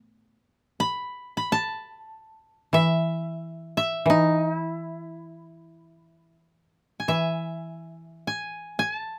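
Unmeasured and in free time, this short passage of Japanese chamber music unfolds in an austere, calm mood, cut from a longer piece and set in an E ryukyu mode. Two kotos make up the whole ensemble, both plucked with fingerpicks and placed up front with a dry, woody character. The accompanying koto sounds from the very start and holds a low register between A2 and B3, its tone warm. A melodic koto joins at 0.8 seconds, singing higher from E4 to B5 with a mellow voice, and both continue to the close at 9.2 seconds. A single section of material is stated and then begins again at 6.4 seconds. Close, detailed microphones catch the plucked strings, with only light reverb around them.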